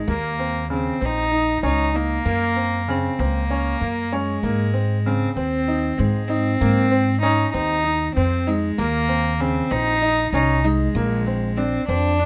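A single bowed cello carries the melody in this short chamber excerpt in 7/8, played sul tasto with a soft attack and a nasal, floating tone that sits up front and close. Beneath it, a worn, natural-sounding grand piano spins arpeggios, while an upright bass on gut strings plucks a woody, thumpy line that also sits forward in the balance. The mood is urgent yet hypnotic, with the uneven metre keeping the straight eighth-note pulse restless. The harmony moves from Eb5 to Gb and Ab, returns to Eb5 at 8.8 seconds, and turns to Bb7 at 11.0 seconds. Recorded dry with close, detailed microphones, the trio sounds intimate and immediate throughout this passage cut from a longer work.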